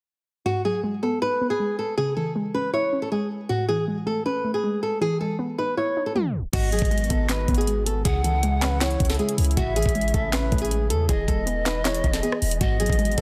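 A fingerpicked flamenco guitar carries the melody up front, its acoustic tone set over a warbling, dusty pluck that supplies dark, detuned, lo-fi accompaniment with a chorus shimmer. This brooding, eerie trap and hip hop piece moves at 158 BPM in a half-time 4/4 feel in G# phrygian, cycling through G#m7, C#m, Amaj7 and Emaj7. After the opening guitar-and-pluck passage, a tape stop at 6.2 s drops into the fuller second part at 6.5 s. There, a knocking electronic trap kit arrives with sharp snare, bright hats, handclaps, rim clicks and crash cymbal, alongside a deep, boomy, sine-like 808-style bass. A mellow, airy pan flute adds a second line with delay, chiff and an unsteady vibrato, while a smooth analog pad with chorus holds sustained chords in the background. The mix sits in light reverb under a dense, heavily limited modern master, cut from a longer piece.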